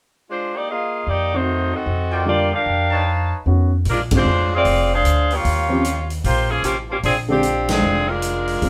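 Big band swing with a joyful, swinging feel, this excerpt from a longer piece opens with a tight, vintage saxophone section carrying the melody up front from 0.3 seconds, soon joined by a woody upright bass and an intimate grand piano whose action noise and long sustain can be heard in the accompaniment. A close-miked trumpet section adds clear, tight stabs between 2.1 and 3.4 seconds, and at 3.9 seconds an acoustic drum kit with a punchy kick, a medium-tuned snare, hi-hat and ride cymbal enters as the music moves into a new section. The band plays live together in one room with moderate reverb, landing full-ensemble accents along the way over rich extended harmony.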